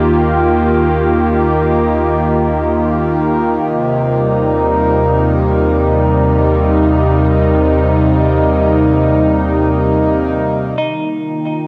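A luminous ambient fragment in free time opens on a smooth, warbling, vintage analog pad with lush chorus, sitting up front over a deep, round sub bass and a reedy, breathing harmonium drone, the harmony shifting from Eb to Cm/Eb at 3.6 seconds, until the bass drops away at 10.7 seconds and a clean, hollow-body electric guitar enters at 10.8 seconds with fingered arpeggios through analog delay, the pad, harmonium and guitar carrying a cassette-tape tint and the whole home recording bathed in wet spring reverb.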